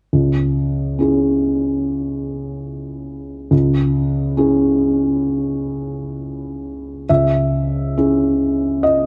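Dark production with light reverb and lossy compression artefacts frames this intimate, reflective fragment of neoclassical minimalist piano in C# minor, where a soft, mellow, vintage-sounding felt-muted upright sits up front and plays alone from 0.1 to 9.1 seconds across a range of C#2 to E5 at a rubato 62-73 BPM in 4/4, tuned to A4 = 439 Hz, moving into a new section at 7.1 seconds.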